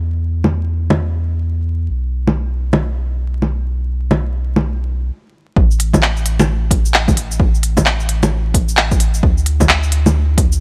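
A dry, close sound with a bed of vinyl crackle opens this ghostly, nocturnal future garage fragment, cut from a longer piece and tuned to A4 = 442 Hz. At 131 BPM in 4/4, with a 62% swing on the 16ths, a soft dub sub bass sits up front from the start: deep, round and sustained, with a fast attack, a blend of triangle and square wave tones, and a touch of tube saturation, moving between A1 and E2. An organic electronic drum kit joins at 0.4 seconds, placing bongos, handclaps, shaker and smooth hi-hats up front with a tape-warm, produced character. A brief stop from 5.1 seconds opens a gap before the second half. At 5.6 seconds a punchy, layered electronic kick drum arrives, re-recorded in a small room, and joins the bass and kit through to the end.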